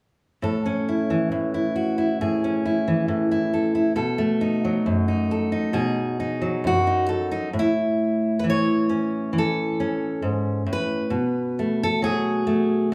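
A distant, roomy sound frames this short folk excerpt, with a wet studio reverb and a touch of small-room ambience placing the listener some way back from the player. The only instrument is a fingerpicked steel-string acoustic guitar, a jumbo-bodied instrument with old strings that gives it a woody, full-bodied tone while still sitting up front in the blend. At a slow 67 BPM in a straight 4/4, the piece moves gently in A major, alternating between A and B7 chords across two short sections, the second beginning at 7.5 seconds and closing on a B7 with its third omitted at 11.1 seconds. The playing spans from a low F#2 up to C#5, filling out both bass and treble. The mood is pastoral and hopeful, like a quiet open-air moment captured in passing from a longer piece.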